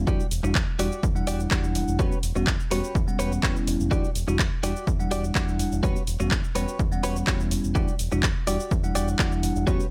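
Sensual and groovy, this filtered disco house cut moves at 125 BPM in E dorian, with a bell-like tine electric piano carrying the Em9 and Em69 chords through a phaser, gritty vintage 12-bit sampler texture and a low-pass filter, while a fingered electric bass with an envelope filter adds tube-saturated weight underneath. A bright, clean, direct-recorded electric guitar plays a compressed, picked riff through analog chorus, and the piano, bass and guitar all pump against a punchy analog kick drum. A layered house kit of cabasa, handclaps and tape-warm hi-hats rides on top in a dry room.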